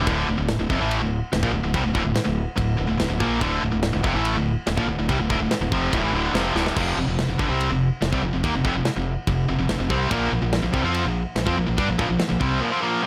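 A bright, picked high-gain guitar riff sits up front, joined by a second distorted guitar set further back, over a growling overdriven fingered bass and a tight, mid-forward acoustic metal kit with a tight kick, medium-tuned snare, crash and ride, forming a heavy, epic heavy metal passage in a small room that moves from Dm to F5 and Bb5, marked by a drum fill at 6.6 seconds.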